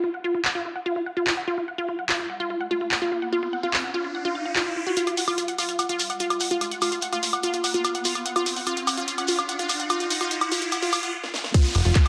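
This short, intense psychedelic trance excerpt sits in a moderate digital room reverb and opens on a lush, detuned unison pluck riff at 146 BPM in a straight 4/4, its sawtooth body coloured by cassette tape, sidechain pumping and dub echo. A techno drum kit arrives almost at once, with a cracking snare, hi-hat, handclaps, crash cymbal and woodblock, all re-recorded in a large room and darkened by low-pass filters. From 2.5 seconds electronic risers and downlifters enter quietly, and at 5.0 seconds a grainy, mellow shekere joins close-miked as the track moves into a long build-up. The build halts in a brief stop broken by a drum fill before the tight, overdriven electronic kick lands up front at 11.5 seconds on an F5 chord. A punchy, funky analog bass with a ring-modulated, filter-plucked tone sounds a single low F1 note just after.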